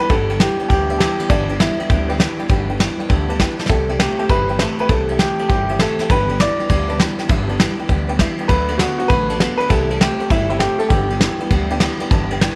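A swung 200 BPM groove in 4/4 drives this rowdy, upbeat rockabilly cut in G major, with up-front brushed drums (dark cymbals, a tight kick and a drum fill at 3.5 s) and a thumpy pizzicato upright bass on steel strings. A clear, natural upright piano carries the melody over G6, C6 and D6 chords, while a twangy, slightly broken-up electric guitar through a small old amp plays a low riff. A jangly, detuned honky-tonk piano sits in the background, and a very quiet picked dreadnought acoustic guitar with audible finger squeak fills in, all in a light reverb with studio ambience.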